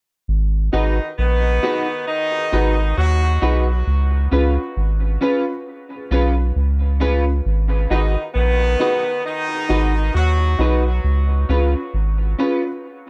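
A slow, swung reggae groove in four sets a spacious, meditative tone for this short cut from a longer piece, rocking between a minor seventh chord and a dominant seventh. A deep, round dub sub bass enters first at 0.3 seconds, sitting up front with a soft, sustained tone. By 0.7 seconds the rest of the band joins: a clean, picked electric guitar with analog chorus and dub echo, and a dark upright piano playing stabs that sound mellow, woody and slightly detuned, with audible action noise, a boxy, worn intimacy and dub echo of its own. A clear horn section with light vibrato carries the second line, distant and roomy yet up front, its pop-style ensemble sound trailing dub echo until it stops at 10.8 seconds. Light studio reverb gives the whole mix an open, unhurried air.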